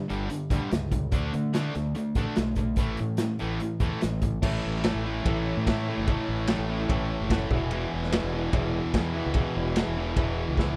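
A straight 4/4 classic rock groove at 146 BPM swaggers along in a sunny mood, with a raw garage drum kit punching up front in a pumping small room under a bright, picked distorted electric guitar, a hollow-toned overdriven semi-hollow guitar in the background and a growling fingered bass with overdrive, until at 4.4 seconds a reedy, barky electric piano with fast tremolo and a very quiet vintage string machine of violas join in, and a drum fill arrives at 10.6 seconds near the cut.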